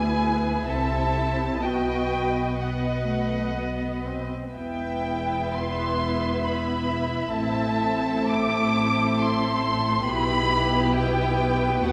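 A slow, solemn romantic movement for string orchestra in E minor, moving in a rubato 3/4 at around 57-69 BPM and cut from a longer piece, it carries a melancholic weight. Muted violins sing the melody up front with a lush, soft-attacked vibrato, while a second, more distant violin section carries a second line. Close violas fill in the accompaniment, and background cellos join the far-off double basses on a dark, veiled bass, with harmony drifting from E7/D through B and Em to a close on Em/B at 10.1 s, all bathed in a reverberant scoring-stage ambience.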